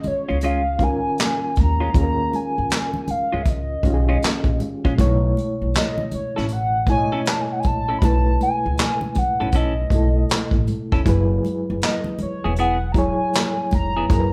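A hollow, nasal square-wave lead with chorus opens this smooth, introspective neo-soul passage, floating over a gritty, overdriven reed electric piano pulsing with fast tremolo through a combo amp. Alongside them from the first moment, a vintage kit played with brushes sits up front with a punchy kick, handclaps and hi-hat, while damped congas stay close and dry in the background. An upright bass joins almost at once, its pizzicato woody and growly, and at 0.3 seconds a clean, compressed semi-hollow guitar adds a picked second line beneath the dark, vibrato-tinged melody. The harmony drifts through lush suspended ninth chords, from Eb9sus4 to B9sus4 and then Gb9sus4 at 11.1 seconds, giving the R&B groove an unhurried, swung lilt. The band sounds as if playing live together in one large studio, with a moderate reverb tail, and this cut from a longer piece runs just over 14 seconds.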